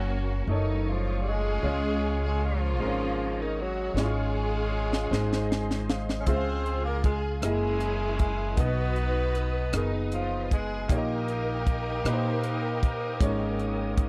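A breathy, whispered tenor saxophone and lush, bowed strings carry the melody of this jubilant, soulful slow gospel piece in 6/8 from the opening moment. Beneath them sit a brilliant grand piano, a woody, growly pizzicato upright bass, and a clean tonewheel organ in the background with key click, fast rotary speaker and chorus vibrato. A tight funk drum kit with a high-tuned snare enters at 4.0 seconds with a fill, and the piano adds its own fill from 5.1 seconds, all in a dry, close 1970s-style studio sound that keeps drums and bass up front and the saxophone distant and intimate.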